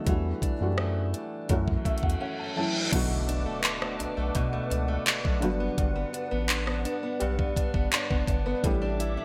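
A straight 4/4 pulse at 84 BPM drives this moody, longing contemporary R&B cut in B minor, where an up-front trap kit with a knocking kick, metallic hi-hats, handclaps, rim clicks and crash cymbal sits under gated reverb, a deep, round analog bass, a mellow felt-muted upright piano with audible action noise and lush chorus, and a boxy fingerpicked archtop guitar with finger squeak playing arpeggios through digital delay. During a felt piano fill, a reverse cymbal at 2.0 seconds and a brief drum mute lead into an electronic impact at 2.9 seconds, where a soft, dark pluck drifts in the background with chorus and delay. A hollow, flute-like, warbling pad with ensemble chorus joins at 3.2 seconds on sustained chords over Bm7, Gmaj7 and A7sus4, all within a bright 1980s-style digital production with light reverb.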